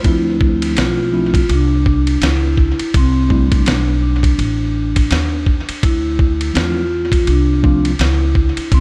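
Jazz-hop at 83 BPM in D dorian, this nocturnal, smoky clip from a longer piece swings its sixteenths over a Dm9 to C69 and back progression. A soft-mallet vibraphone carries the ringing, metallic melody through tape echo, while a mellow tine electric piano, heard through its built-in speakers, comps until 7.9 seconds with its own tape echo beneath. A woody, growly pizzicato upright bass holds down the bass line, and a gritty, compressed sampler-style drum kit with a thumpy kick and fat snare sits up front, all in an echo-heavy digital ambience.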